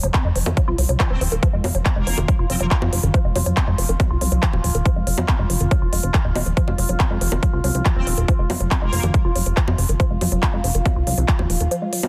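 Psychedelic trance at 140 BPM in F phrygian, this alien, psychedelic excerpt drives on an overdriven, punchy electronic kick and a crisp big-room kit of bongos, handclaps and hi-hat, under a funky, ring-modulated analog bass that plucks between Eb1 and F2 until a brief break at 11.7 seconds. A woody, wave-folded pluck warbles through a riff with chorus, cassette tape character, digital delay and sidechain pumping, while a resonant drone with moving overtones enters at 0.7 seconds to sustain chords on F4, and a filter sweep runs across a synth arpeggio throughout. A metallic, aggressive FM wobble bass surfaces briefly as a second line, high-passed and soaked in dub echo and ensemble chorus, all within a dense, heavily limited, dry modern master.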